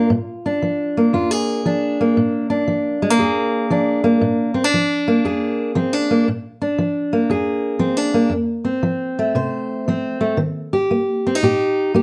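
A swung pulse at 116 BPM in 4/4 drives this rollicking, soulful blues in Bb mixolydian, a 12-second excerpt cut from a longer piece and tuned slightly low to A4 = 437 Hz. A lone fingerpicked steel-string acoustic guitar sits up front with an auditorium-like body, ranging from F2 to C5 over chords moving from Bb to F at 8.3 seconds and Eb at 10.4 seconds. A moderate studio reverb gives the playing a soft halo of room.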